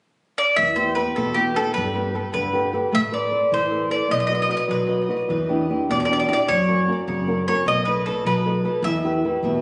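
A 6/8 metre at 102 BPM with a straight feel carries this passionate, romantic Italian folk serenade in E minor, tuned to A4 = 435 Hz and cut from a longer piece. The picked, double-strung mandolin sings the woody, up-front melody from 0.4 s, touched with tape echo. From 0.6 s a dark, thumb-plucked flamenco guitar with audible finger squeak joins it, over a warm pizzicato upright bass on steel strings, moving from Em through Gadd9, Amadd9 and B7 back to Em. The phone recording sits in a moderate concert hall reverb with compression and a dulled top end.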